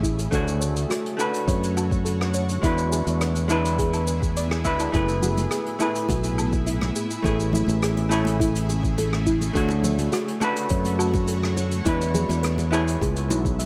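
Set in a light, small-room ambience, this relaxed sunset chillout passage, cut from a longer piece, pairs a dark, clean hollow-body jazz guitar with delay and a shimmering, ethereal pad treated with chorus, phaser and its own reverb, while a soft, round pluck with chorus and delay plays arpeggios in the background. Up front, a bright, growly fingered electric bass sits over a soft, tape-warm electronic kick and a natural brush kit of hi-hat, rim click, shaker and woodblock, with very quiet, damped, high-tuned congas joining at 5.1 seconds. The harmony drifts through Dmaj7, E7, F#m11 and Amaj7 before returning to Dmaj7 and E7 and closing on C#m7.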